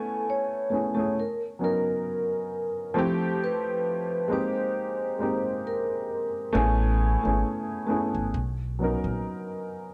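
A laid-back hip hop groove in 4/4 sways with a gentle swing on the sixteenths, setting a nostalgic, cosy mood in this short cut from a longer piece. A worn, slightly detuned upright piano sits up front with cassette-tape colouring, carrying the lush major-ninth chords from the opening through to 9.9 seconds. Alongside it, a mellow vibraphone played with soft mallets sings the melody with a ringing, metallic shimmer and slow motor vibrato, softened further by a low-pass filter, until it stops at 6.6 seconds. As the vibraphone bows out, a woody pizzicato upright bass steps forward at 6.5 seconds, its steel strings giving the low notes a firm, acoustic presence. The whole passage sits in a small room bathed in moderate spring reverb, lending an intimate, homespun glow.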